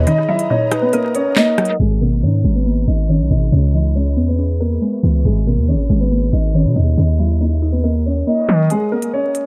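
Dark and menacing, this short drill cut from a longer hip hop piece moves at 139 BPM in 4/4 with a half-time feel, set in G# minor and tuned to A4 = 444 Hz. A dark, mellow concert grand piano carries the melody up front, its short-sustained notes softened by a low-pass filter and trailed by dub echo, while a hollow, clarinet-like synth lead adds a soft second line in the background for only the opening 1.8 seconds. Beneath them, a woody, round mallet-like pluck with chorus supplies the accompaniment, and an ethereal pad with ensemble chorus, tremolo and built-in reverb holds sustained chords far back in the mix. A distorted, aggressive 808-style bass sits heavy and up front, while the drill kit's sharp snare, crisp hats, handclaps and rim clicks, touched with dub echo, appear only in the breaks from 0.1 to 1.8 seconds and from 8.7 seconds on. Through the middle stretch a filter sweep runs over the chords G#madd9, C#m7, G#madd9 and D#m before the music settles on G#sus2, all wrapped in an echo-heavy digital ambience with vinyl crackle and a low-pass filter.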